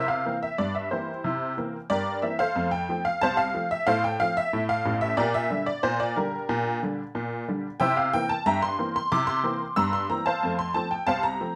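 Lively and jaunty, this short excerpt of ragtime piano moves at 91 BPM in a straight 2/4 feel, set in F major with the tuning sitting slightly sharp at A4 = 441 Hz. A honky-tonk upright piano plays solo from start to finish, spanning a broad range from A1 up to E6. Its tone is detuned and jangly, with a vintage, bright, natural character, and it sits up front, touched by light reverb. The harmony opens on C7, settles to F at 2.6 seconds, and passes through F/A and Gm/Bb before returning to C7 and resolving on F at 10.4 seconds. The whole 11.6-second passage forms a single section cut from a longer piece.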